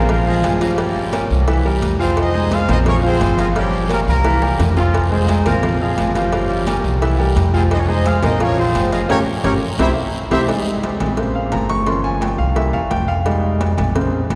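A cavernous cathedral reverb surrounds this driving, danceable salsa excerpt in F minor at 173 BPM, where a punchy, octave-doubled horn section carries the melody until 10.4 seconds over a present, polished baby grand piano, a woody, thumpy pizzicato upright bass up front, background percussion of ringing high-tuned congas, round low-tuned cowbell and bongos, and vintage metal-shell timbales with agogo bells, plus a close, dry, raspy guiro, with drum fills and a band accent leading into a piano solo from 10.5 seconds.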